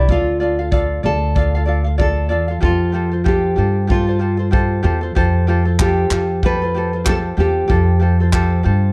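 Acoustic pop fragment with a heartfelt, sunny mood and a gently swung feel: a full-bodied, fingerpicked nylon-string guitar carries the melody with audible finger squeak until 8.0 s. Beneath it sit a light, fingerpicked tenor ukulele, a woody, up-front pizzicato upright bass and a small-room brush kit with punchy kick and handclaps, as the harmony moves from Dm to Fadd9 in a dark, warm production with light reverb.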